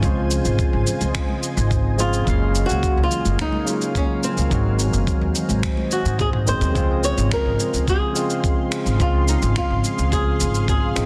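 A dense, heavily limited modern master with light small-room reverb carries this relaxed, smooth sunset chillout piece, cut from a longer track, in a straight 4/4 at 107 BPM in Db major. A fingerpicked flamenco guitar, boxy and warm with audible finger squeak, carries the melody through tape echo, while a bright, barky tine electric piano played clean through a combo amp supplies the accompaniment, also touched by tape echo. Beneath them a shimmering, ethereal pad with an octave-up sheen, detuned unison, granular texture and chorus holds sustained chords over a slow attack and long release. A woody, pizzicato upright bass with gut strings sits prominently in the mix, joined by a gritty, compressed sampler-style soul kit of finger snaps, shaker and toms with soft clipping on the snare, plus a thumpy electronic kick. High-tuned, saturated congas with a thin skin play hard-handed in the background from 0.9 to 5.9 seconds, and a drum fill at 6.2 seconds leads into a second section as the harmony moves through Dbmaj7, Gbmaj9 and Ab7 before returning to Dbmaj7.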